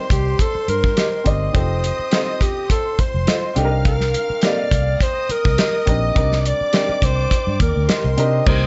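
Lightly reverberant and dark at the top end, this brief cut from a longer piece is lush 1970s-style soul in C dorian at 104 BPM, with a silky, cinematic mood and a swung sixteenth-note feel over Cm7, F7 and back to Cm7. An up-front alto saxophone with vibrato and a smooth top carries the melody alongside a focused, bowed string section, while an intimate baby grand with audible action noise supplies the accompaniment. A round, punchy, foam-muted electric bass and a warm acoustic kit with dark cymbals and a tight kick anchor the groove, and a clean, fingered electric guitar riff with tremolo comes in at 1.0 s.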